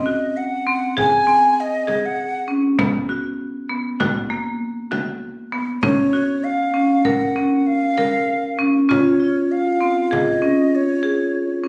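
Contemporary chamber music in 5/4 at 98 BPM in Db major, restless yet hopeful, this short excerpt sets a breathy, up-front jazz flute melody with soft attack and vibrato over woody, percussive marimba arpeggios struck with hard mallets, while a deep, large frame drum sounds from 1.0 to 10.6 seconds. At 8.9 seconds a ringing, metallic vibraphone with fast motor vibrato enters as a second line, as the harmony moves from Ab7 through Cb5 and Gbmaj7 to Dbmaj7. The sound carries the roominess of a phone recording, with light studio reverb and compression.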